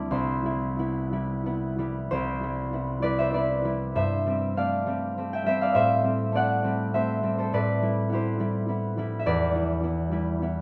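Bathed in a lush recital-hall reverb with a 1.6-second decay, this short classical passage features a solo concert harp, close and up front, whose ringing, thumb-plucked tones span C2 to G6 in a graceful, peaceful 3/4 with a rubato feel, drifting from Cmaj7 through G9sus4, Am7 and Cmaj7/A to Em7.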